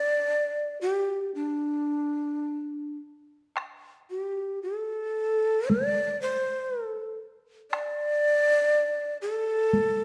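Dark and close in a moderate recital hall, this austere, calm fragment of Japanese chamber music in free rubato opens with a breathy, end-blown bamboo shakuhachi carrying the melody up front with a crisp, chiffy attack and straight tone, until a dry taiko ensemble struck with heavy sticks joins at 3.6 seconds and plays alongside it to the close.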